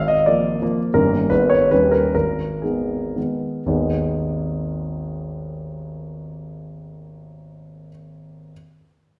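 Dotted rhythms in 3/4 drive this nostalgic, wistful romantic classical dance, a short cut from a longer piece in G# minor that moves freely in rubato between 108 and 185 BPM and slows from 0.5 to 3.7 seconds. A solo concert grand piano, warm with a deep bass and short sustain, sits up front while ranging from G1 to E#5. A wet recital hall reverb places the listener further back in the room, and the harmony settles from dominant colour onto G# minor by 2.1 seconds.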